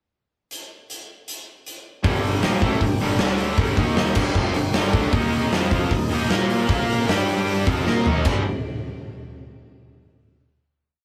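Hard rock in G minor at 155 BPM, heavy and driving, opening with a big, up-front acoustic drum kit alone for a pickup bar with bright cymbals, a punchy kick and a medium-tuned snare. At 2.0 seconds three picked power-chord guitars come in together, a bright double-tracked overdriven one, a tight distorted one and a very quiet hollow-body semi-hollow, joined by a growly fuzz fingered bass driving eighth notes that doubles the riff, while a very quiet tonewheel organ with key click, vibrato and slow rotary speaker holds sustained chords underneath. A drum fill at 7.9 seconds leads into a final G5 chord in a rough, small rehearsal room.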